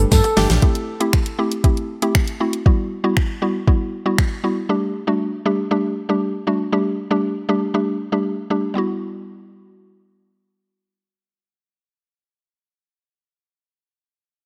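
A dry, close mix with little reverb frames this confident, driving dance-pop excerpt in E minor, moving at 118 BPM in a straight 4/4. In the opening 0.6 seconds, several parts flash by together: a compressed, picked riff on clean electric guitar recorded direct, with subtle chorus; a hollow, dark, organ-like FM bass with sidechain pumping; and a smooth, expressive sawtooth lead with vibrato, chorus, delay and a moving notch. A drum fill from an electronic, smooth R&B kit also sounds in that opening, and the kit stays up front with soft kick, fat snare, hi-hat, shaker and finger snaps until 4.3 seconds. Carrying the accompaniment through to 13.4 seconds is a woody, round, mallet-like FM pluck with a vintage, warbling character, a noise layer, chorus and sidechain pumping. The harmony moves through Gsus2, Am7 and Emadd9, returning to Emadd9 as a new section begins.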